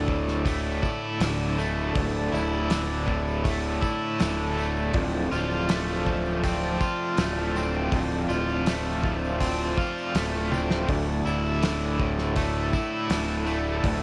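Mysterious and dark, this psychedelic rock excerpt moves at 81 BPM in a straight 4/4, centred on D minor with tuning set slightly low at A4 = 438 Hz. A crunchy, overdriven electric guitar sits up front, its picked, double-tracked riff bright and shimmering with tremolo, while a fuzz-soaked fingered bass holds down a low D beneath it. A reedy, breathing pedal harmonium sustains mellow chords in the background, moving from Dsus2 to F6/D at 4.9 seconds and back to Dsus2 at 10.9 seconds. The cloth-damped drum kit has a thuddy, small-room character with a fat snare, tight kick and rolled-off top, and it plays a fill from 10.5 seconds just before the return to Dsus2. A jingly tambourine adds a very quiet glint, and light reverb gives the whole a modest sense of space.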